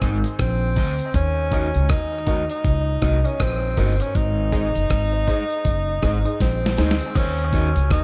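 This heavy, deep dub reggae excerpt opens with a brief warm horn section, distant and roomy with light vibrato, set in the background and trailing dub echo before it stops at 0.7 seconds. Beneath it, an up-front upright bass plays pizzicato on gut strings with a woody, dark, thumpy tone, alongside a dusty soul sampler-style drum kit that sounds compressed and gritty, with a thumpy kick, medium-tuned snare, rim click, hi-hat and crash cymbal, re-recorded in a small room. A clear tenor saxophone carries the melody from 0.4 seconds, sitting up front yet still roomy, with light vibrato and dub echo. In the background, a slightly broken-up electric guitar is fingered through a high-pass filter and its own dub echo, while a very quiet, muted dub chord stab adds mellow sawtooth and square-wave plucks with a phaser. The swung groove moves between Ab and Ebm in an echo-heavy mix with digital ambience, and a drum fill arrives at 6.4 seconds.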